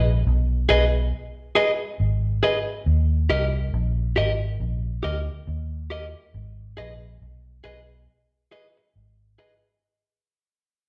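A slow, swung 4/4 pulse at 69 BPM sets up this laid-back roots reggae excerpt, which fades out across its full length as it moves from Abm to Eb at 2.9 seconds and back to Abm. A dark, round, foam-muted vintage electric bass sits up front with an amped tone, while a clean, picked electric guitar, compressed and warm, joins at 0.7 seconds to supply the accompaniment. The band plays live in one room, bathed in a wet large-studio reverb.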